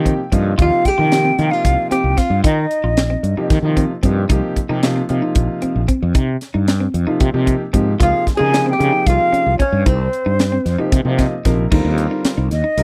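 A hollow, vibrato-laden concert flute carries the melody over a growly fretless bass and a crisp, punchy fusion drum kit in this nocturnal, intense electric jazz fusion excerpt in C minor, moving at 226 BPM in 7/8 on a straight feel. A clear concert grand piano with audible action noise and a boxy low end comps and adds fills at the start and near 10.9 seconds. A dark, compressed archtop guitar plays a second line during the flute's passages, and a twangy, chorused clean electric guitar adds background stabs, all in a dry, close 1970s-style studio sound, before the flute takes a short solo from 11.7 seconds.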